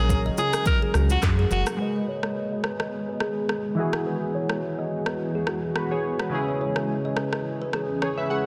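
Mellow and smooth, this afrobeats excerpt in G# minor moves at 106 BPM with a gentle 16th-note swing, opening on a bright, vibrato-laced alto saxophone solo, a deep sine sub bass with octave, and bongos and congas that drop out by 1.7 seconds. Round, detuned analog keys with chorus and a filter sweep carry the accompaniment through to the end, joined by a woody, plucked kalimba riff with delay, a cloudy, evolving granular pad of sustained chords, and an electronic afro-pop kit of deep kick, handclaps, rim click and shaker roughened by vintage 12-bit sampler grit. The harmony shifts from F#add9 to G#m at 1.8 seconds and then to Eadd9, all set in a small, lightly reverberant room under a dense, heavily limited modern master.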